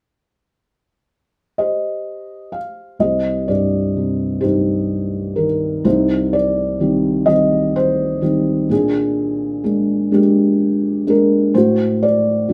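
This folk piece in C minor is intimate and reflective, moving at a slow 42 beats per minute counted in dotted quarters, with an unhurried, straight 6/8 lilt. A felt-muted upright piano carries the melody, entering at 1.6 seconds and playing through to the end of this fragment of a longer work. Its tone is dark, boxy and softened by thick felt, sitting up front in the mix while ranging from deep bass notes to the upper middle of the keyboard. The harmony rests on C minor before moving to B-flat seventh at 8.7 seconds and to D seventh over A at 11.5 seconds. Played live in a single room, the performance carries a moderate studio reverb that lends the close, hushed sound a gentle sense of space.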